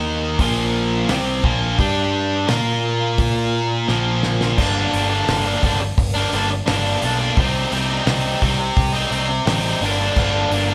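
A tight, distorted electric guitar sits up front, bright and double-tracked, driving a gritty, brooding classic rock riff in G minor at 86 BPM in a straight 4/4. A picked electric bass runs beneath it from the start, growly and punchy with a direct, amped edge. A damped 70s drum kit joins at 0.4 seconds with a fat snare, tight kick, dark cymbals and a rolled-off top, its hi-hat and crash adding a dry, dark shimmer. A drum fill from 3.9 to 4.6 seconds leads into a second passage where the harmony moves from G minor to C minor and back to G minor. The band sounds as if it is playing live together in a stone room with moderate reverb, lending the groove a brooding, hard-edged atmosphere. The excerpt is cut from a longer piece.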